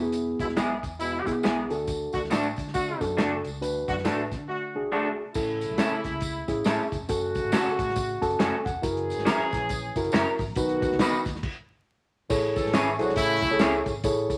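Through a crackling, reverb-soaked vintage sound, this joyful, uplifting slice of swung uptempo 1960s-style soul sets a mellow, reedy electric piano and a round, foam-muted fingered bass over a dry, dark soul drum kit and a jingly tambourine, while a smooth horn section carries a second line and a slightly broken-up guitar through a small old amp adds compressed stabs with vibrato, the electric piano slipping in a fill at 8.0 seconds before the band stops at 11.4 seconds.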